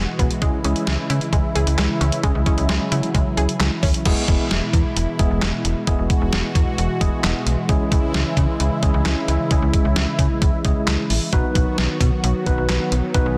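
This melancholic, cool synth-pop excerpt opens with a brassy, airy analog pad holding sustained chords with chorus and vibrato. Beneath it sits a snappy FM bass with a metallic, slap-like attack, while a lush, detuned unison pluck plays arpeggios with digital delay in the background until 4.0 seconds. A detuned 8-bit drum machine, sitting up front, joins almost at once at 132 BPM in a straight 4/4, with a thumpy kick, medium-tuned snare, handclaps, hi-hat and crash cymbal. A clean tine electric piano adds accompaniment through its built-in speakers as the harmony in C# minor moves from C#m to E, back to C#m and on to B. Light reverb frames a dense, heavily limited modern master that runs to the end of the cut at 13.4 seconds.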